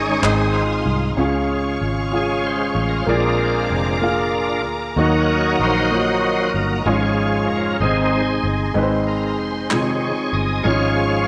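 A straight 6/8 pulse carries this slow gospel passage, lifted from a longer piece, with a soulful, jubilant mood. The bright tonewheel organ sits up front as the soloist from start to finish, its full, shouting tone lightly overdriven with key click, chorus vibrato and a slow rotary speaker. Beneath it, the concert grand piano plays an intimate, natural accompaniment with deep bass, long sustain and audible action noise, while a lush studio string section holds smooth, bowed chords high above. A fingered electric bass gives a dark, round, foam-muted foundation, and crisp, close group handclaps arrive briefly at 0.2 and 9.7 seconds. The chords move from Ab to Db, through Bb7 and Ebm, and settle back to Db over Ab, all bathed in a wet echo chamber reverb.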